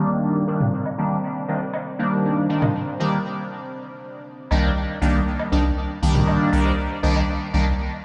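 Dub techno with a nocturnal, cavernous mood, where a juicy, resonant polysynth throws up-front stabs drenched in chorus, phaser and dub echo while its filter sweeps alongside a dark, slow-blooming ambient pad through the opening until about 4.3 seconds, electronic toms and woodblock tick through their own echoes, lo-fi synth keys warble a mellow, nostalgic riff in the background, and a round, soft sub bass arrives at 4.5 seconds, all heard as if through a big sound system in a bare stone room with the highs filtered away.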